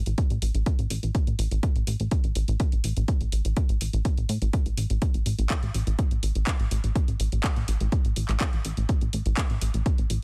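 A plucky analog bass sits up front in this driving, hypnotic melodic techno excerpt at 124 BPM, its sawtooth, pulse and sine tones shaped by a fast-attack filter pluck that decays into a mellow, funky bounce between A1 and A2, pumping against the sidechain. A punchy, overdriven electronic kick drum hits hard alongside it, while a layered house kit adds handclaps and bright hi-hats with its own gritty overdrive further back in the mix. The sound is dry and close, with little reverb, and the straight 4/4 groove holds steady throughout the single section, cut from a longer piece.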